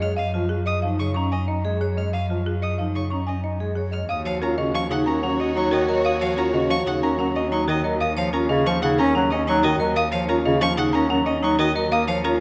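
In a straight 6/4 pulse, this bright, hypnotic minimalist classical excerpt sets a woody, hard-mallet folk marimba melody over a distant bass clarinet, a rich bowed cello bass and arpeggios from a smooth solo violin and a metallic, ringing vibraphone, while a mellow alto flute and a lush symphonic string section add a second line and sustained chords from 4.1 to 7.8 seconds, all in the moderate reverb of a scoring stage.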